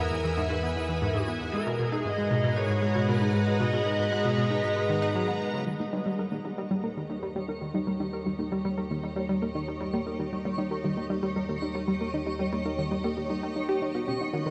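A steady, straight 4/4 pulse from a bright, detuned analog pluck riff drives this hypnotic, expansive stretch of sequencer-driven ambient space music, where an overdriven, lo-fi electric guitar melody sounds only until 5.1 seconds over a lush string machine, a warbling analog drone bass and a twinkling granular shimmer, before dark, soft round pluck arpeggios enter at 5.7 seconds under a filter sweep as the strings and drone fade in, all soaked in a dreamy, huge reverb.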